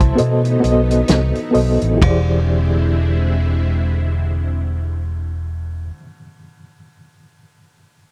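A dry, close studio sound with little reverb gives this short excerpt of lush 1970s-style soul an intimate, up-front presence, and its mood is bittersweet and silky. A reedy, worn electric piano carries the accompaniment through its built-in speakers, a touch out of tune and shimmering with tremolo. Beneath it, a string machine holds sustained chords in a full, vintage ensemble voice, sawtooth-edged and bright with a sub octave, slow attack and chorus. A round, punchy fingered electric bass anchors the low end, while an acoustic soul kit with a fat snare, tight kick and dark cymbals plays hi-hat, ride and toms as the opening pulls back in pace, dropping out at 2.3 seconds. The harmony moves from a B7b9 to an E7alt chord at 2.0 seconds, and the bass and strings fall away at 5.9 seconds, leaving the electric piano alone until it stops at 8.1 seconds.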